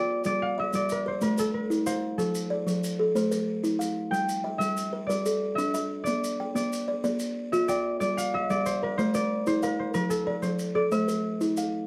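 A buzzing kalimba sits up front with soft, woody, hollow-box arpeggios, its short, dark fingertip plucks carrying a gentle rasp through a rippling, warm Southern African interlocking cycle in a straight 12/8 on an equiheptatonic tuning. A ringing, thumb-plucked concert harp carries the melody just as close, while grainy maracas sound distant in a large room from 0.2 seconds to 11.7 seconds. The harmony circles through Gm, Am, F and Bb under light reverb, and the clip is cut from a longer piece.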